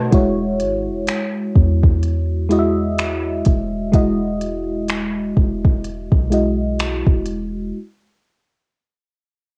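Light reverb and the soft grain of a home cassette recording frame this short, tender slice of contemporary R&B, cut from a longer piece and moving at a slow 63 BPM in 4/4 with a gentle sixteenth-note swing in E major. Up front, an FM electric piano carries the accompaniment from the start, its mellow, warbling vintage tone coloured by a phaser, a low-pass filter, a noise layer and tape saturation, and a filter sweep runs across it from 0.1 s to 7.7 s over an E69 chord. Beneath it, a soft 808-style bass holds the low end with a deep, round, sine-like tone whose notes strike quickly and then decay into darkness. The smooth R&B drum kit, also up front, pairs a soft kick with silky hi-hats and finger snaps, its electronic, produced sound given a tape-warm character and the air of a large room. The result is a romantic, intimate groove that feels hazy and close, ending at 7.8 s.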